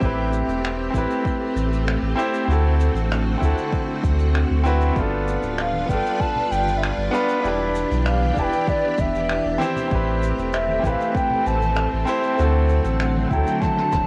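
A relaxed, smooth sunset chillout excerpt in A minor at 97 BPM opens on a brilliant grand piano with analog delay over silky, chorused string-machine chords, a round tube-saturated sub bass, an overdriven electronic kick and a dark, softly brushed bed of shaker, finger snaps and rim click, all with a cassette-tape home-recording character and light reverb, before a pure, distant wooden flute with vibrato takes the melody at 5.6 seconds, very quiet close congas join at 5.7 seconds, and a drum fill closes it at 13.6 seconds over a cycling Am7, D7, G7, Em7 progression.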